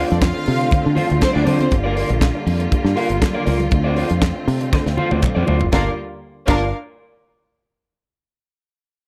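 Driving and sultry, this short disco cut at 120 BPM in G minor pairs a tight, up-front funk kit with its high-tuned snare and a punchy, foam-muted fingered bass under lush, bowed strings holding sustained chords while a second string line with a smooth top sounds from 0.1 to 1.7 s and returns at 5.7 s, a dark, slightly broken-up electric guitar with spring reverb plays accompaniment, thick-skinned congas sit in the background, very quiet crisp handclaps join, and a drum fill from 4.7 s leads into the Gm7 change in a dry, close 1970s-style studio sound.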